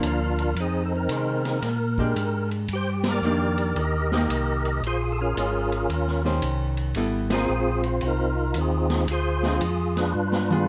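Swung eighth notes in 4/4 drive this late-night, soulful soul jazz organ trio excerpt, cut from a longer piece. A fat, lightly overdriven tonewheel organ with third-harmonic percussion, key click, chorus vibrato and slow rotary speaker sings the melody up front, while a dark, clean, picked hollow-body archtop guitar comps through rich seventh chords and a round, mellow organ carries the bass line. A distant, roomy big-band drum kit with a boomy kick swings underneath, and the band hits accents at 3.0 and 7.2 seconds before a drum fill at 10.2 seconds.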